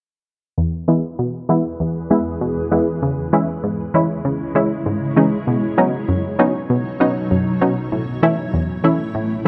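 Summery and sunny, this short dancehall fragment in E major moves at 98 BPM in a straight 4/4, cycling through E, C#m, Badd9 and A under a filter sweep that runs from 0.6 seconds to the end. A punchy, detuned sawtooth-and-sine chord stab with a wave-folded edge, quick plucky attack and chorus carries the accompaniment up front from 0.6 seconds. From 1.6 seconds a cloudy, evolving granular pad adds blurred, full-bodied sustained chords with slow attack, long release and its own reverb, all set in a moderate plate reverb.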